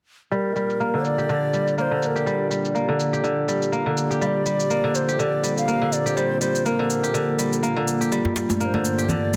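Afro house at 123 BPM in G minor with an earthy, swung 4/4 feel, where an airy, tongued bass bansuri carries the melody with vibrato and delay over a dark, detuned analog pad in lush chorus, a crisp, fingerpicked kora plays up-front arpeggios through a filter sweep and delay, a tape-tinged electronic shaker sits low in the mix, and a dry, hard-handed djembe joins at 8.2 s, followed by ringing, high-tuned congas under soft hands at 8.5 s, set in a moderate room reverb and a dense, heavily limited master.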